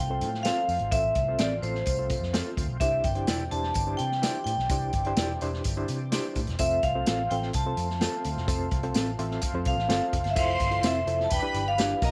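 Lightly reverberant and vintage in tone, this uplifting 1960s-style soul excerpt sets a ringing, up-front vibraphone melody with slapback echo over a round, foam-muted picked bass, a small-room drum kit with a punchy kick, jingly tambourine, dark clean guitar stabs, a barky overdriven reed electric piano with fast tremolo that takes a fill at 9.0 s, and a gritty tonewheel organ through a slow rotary speaker in the background, before a lush bowed string section joins at 10.4 s.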